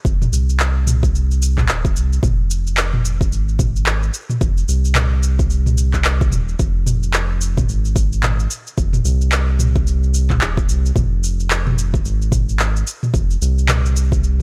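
Organic downtempo cut from a longer piece, hypnotic and meditative in F minor at 110 BPM with a 16th-note swing, built on an overdriven electronic kick drum with a deep, gritty thump, an up-front afro-pop drum kit of handclaps, shaker and toms that also sounds overdriven and re-recorded in a small room, and a round, dark analog bass spanning Eb1 to C2 with a fast attack, sustained notes and sidechain pumping, all in a dry mix with little reverb.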